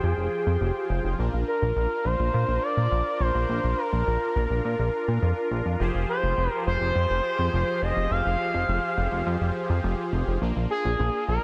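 Synthwave at 104 BPM in F dorian, moody and cinematic, where an expressive, dark sawtooth-and-triangle lead with vibrato, chorus and digital delay sings up front over airy, detuned supersaw chords and a glossy, retro chorused bass with a plucky pulse-wave bite, all three playing throughout this 11.4-second cut as the harmony sways between Fmadd9 and Bb in a lush hall reverb and a dense, heavily limited modern master.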